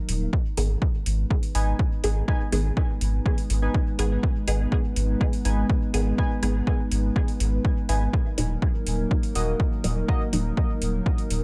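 A punchy, tape-warm analog kick and a round, deep sub bass with sidechain pumping anchor this hazy, meditative dub techno excerpt, where a dark, detuned pad with chorus holds sustained chords, metallic layered hi-hats tick, a resonant filtered chord stab with phaser, cassette-tape grit and dub echo moves under a filter sweep, warbling lo-fi synth keys play a nostalgic riff from 1.5 seconds, and very quiet congas and woodblock surface briefly before returning at 6.4 seconds, all in a light reverb as the harmony shifts from G#m to D#m.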